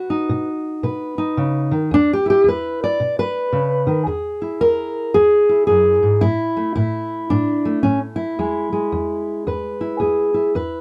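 Acoustic country blues with a swaggering, rollicking mood, this short excerpt from a longer piece moves at 111 BPM in 4/4 with a 62% swing on the eighth notes, in E major. A single fingerpicked steel-string acoustic guitar carries everything, ranging from E2 up to D5 and sitting up front in the mix. Its tone is dark and woody, with the dull character of old strings and the body of an auditorium-size instrument. The opening stretch, up to 4.1 seconds, is a solo passage built around B with a brief chordless break, before the music settles onto E with another chordless break around 6.2 seconds. The recording is dry and close in a 1970s studio style, with only light reverb on the guitar.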